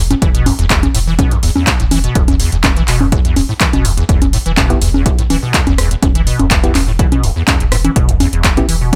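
A squelchy, resonant square-wave acid bass riff sits up front in this trippy, playful acid house excerpt, its plucked, quickly decaying notes roughened by tube saturation and spread through ensemble chorus and digital delay. Beneath it, a deep, round sine sub bass holds low sustained notes, pumping against the sidechain in a straight 4/4 at 124 BPM over an E5 chord. A punchy, tape-warm analog drum machine supplies congas, handclaps, hi-hat and rim click close to the ear, while a punchy electronic kick, also re-recorded in a small room, drives the groove. From 4.7 s to 8.7 s a dark, full-bodied organ-like stab appears, its hollow, wave-folded tone carrying chorus, gritty 12-bit sampler character and digital delay. The mix is dry, with little reverb, keeping the parts tight and close.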